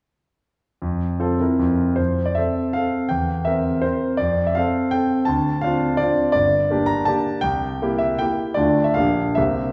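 A lush recital-hall reverb surrounds this short fragment from a longer piece, heard from further back in the room. A solo grand piano, smooth with a vintage tone and sitting up front, plays a romantic classical dance in triple time from 0.8 s to 9.7 s, with a proud, rustic character. Its dotted rhythms give the dance a lilt, while a flexible rubato lets the pulse breathe. The piano ranges from G1 in the bass up to Bb5, and after a brief opening phrase it moves into a longer second passage at 2.0 s. The harmony moves between F and C7, then passes through Dm7, Gm and C7 before the fragment closes on Gm/Bb.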